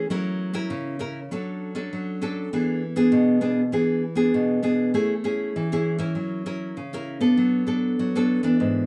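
A bright, fingerpicked nylon-string guitar plays alone and up front in this sunny, playful samba excerpt, moving at 99 BPM in A major with a classical touch. Its chords shift from F#7 through Dmaj7/F# and E7 before a second section opens on Amaj7 at 5.0 seconds and passes through F#7 to Bm7/F#. A moderate studio reverb gives the acoustic sound a touch of air until the clip closes at 8.9 seconds.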